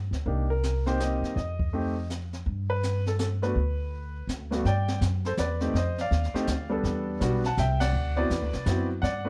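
A lilting 3/4 swing at 164 BPM in G major carries this relaxed jazz piano trio excerpt, where a thumpy, woody pizzicato upright bass sits up front from the start, a jazz brush drum kit with dark cymbals, a high-tuned snare and a boomy kick joins at 0.1 seconds, and a clear, intimate upright piano with audible action noise and long sustain takes the melody from 0.3 seconds, moving through chords such as Cm7, F7(no3), Gmaj7 and D13 under light reverb before a band accent at 7.8 seconds.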